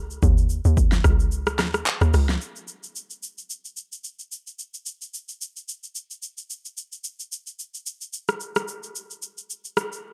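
Amapiano with a hypnotic, deep mood and a lightly swung 16th-note feel, where a tight, percussive log drum bass with a fast attack and mellow FM tone sits up front only until 2.4 seconds, while an electronic deep house drum kit of punchy kick, fat snare, handclaps, hi-hat, rim click and shaker carries on through a dry, dark production.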